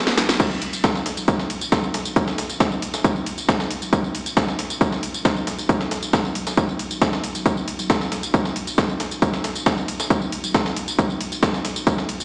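Driving and relentless, this excerpt of peak-time techno runs at 136 BPM in a straight 4/4, opening with a brief break and drum fill before the groove settles in. A punchy electronic kick sits up front and dominates the mix from 0.4 seconds, layered and produced with the character of a small room. Around it, a techno drum kit adds a cracking snare, smooth hats, crash and ride cymbals and tambourine, while a sampler-style breakbeat kit contributes a gritty, high-tuned snare and compressed hi-hats, both thinned by high-pass filtering. Beneath them, a deep, thick sub bass centred on B1 is overdriven and low-pass filtered, its sustained tone pumping against the sidechain. The sound is dry in places yet carries the weight of a big system in a bare room, with hints of large studio reverb and a small-speaker edge.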